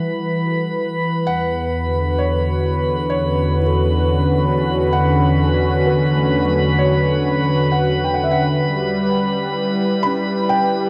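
Awash in cathedral reverb and a cassette-tape haze, this spacious, reflective ambient fragment at 65 BPM rests on an up-front, smooth, detuned sawtooth pad with chorus holding sustained chords from Emadd9 to Bmadd9/E before settling on Em at 8.7 seconds, while a soft, muted felt piano fades in with a mellow, intimate melody trailed by delay, a very quiet woody kalimba plucks hollow, boxy arpeggios, and a glassy sine texture with drifting overtones hovers on a high B with chorus and its own reverb.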